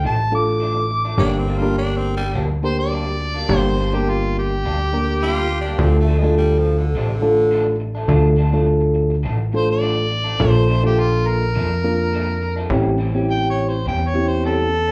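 A soulful, smoky blues in D minor moves at 104 BPM in a straight 4/4, heard as a cut from a longer live gig played through a venue's PA with club reverb. An overdriven, gritty harmonica carries the melody up front with light vibrato and tongue slaps, playing from the start to 6.1 seconds and returning at 9.6, its jazz-style solo lines wrapped in slapback echo and plate reverb. A growling, raspy tenor saxophone adds a second line from 1.2 to 7.7 seconds, bright and jazzy under the same echo and plate reverb. Underneath, a punchy, funky analog bass with a fast-attack filter pluck sits prominently, while a reedy, mellow electric piano heard through its built-in speakers fills in the accompaniment. A slightly broken-up, lo-fi electric guitar through a small old amp plays picked stabs throughout, lush chorus on it, as the chords travel from Dm to Gm and back before closing on Bbmaj7 and A7#9.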